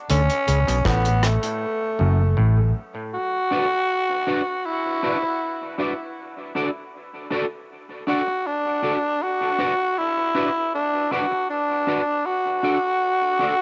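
A raspy, growling tenor saxophone opens this heavy, deep dub reggae cut from a longer piece, joined at once by a stringy, overdriven clav riff, a dark, round, foam-muted electric bass pushed up front with tube saturation, and a tight-kicked acoustic drum kit of hi-hat, kick and rim click. The drums drop out at 1.6 seconds, and the clav and bass fall away shortly after, by 2.7 seconds, leaving the saxophone's light vibrato and dub echo hanging over an F#m chord. At 3.5 seconds a twangy, picked electric guitar at the edge of break-up enters up front, coloured by ensemble chorus, cassette tape and dub echo, as the harmony moves between Bm and D. The saxophone carries the pop-style solo melody throughout, its gritty tone coloured by cassette tape and dub echo. The whole piece sits in a small room with light reverb and has the intimate feel of a home cassette recording.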